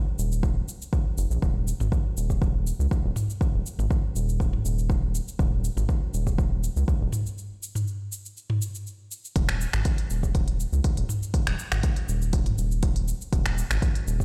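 Afro house with a spiritual glow, this short cut from a longer piece rides a steady 4/4 pulse at 121 BPM with a light swing on the sixteenths. A deep, tape-warm electronic kick drum sits up front from 0.4 seconds, layered and carrying a small-room character. Beneath it, a round analog bass moves through a low register, its dark, wave-folded tone blending square, sine, triangle and sawtooth shapes, with a fast attack, sustained notes and a sidechain pumping that breathes with the beat. The afro-pop drum kit, present from 0.2 seconds, adds cabasa, finger snaps, smooth hi-hats and toms in a polished electronic finish, a little further back than the kick and bass. A break arrives from 7.4 to 9.4 seconds, and the whole track sounds as if played on a big sound system in a bare stone room, with a reverberant ambience around it.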